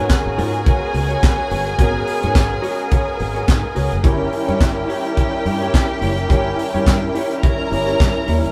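Sultry and danceable, this short disco excerpt sets an up-front, tight funk drum kit with handclaps and a high-tuned snare over a round, foam-muted fingered bass, while a reedy, shimmering musette accordion holds sustained chords, a rich chamber string section bows a soft sul tasto second line, a dark, clean electric guitar sits in the background, and a warm, very quiet concert grand piano with a deep-bassed tone adds accompaniment, the band playing live in one room under a wet studio reverb as the harmony moves from G#m11 to D#7b9.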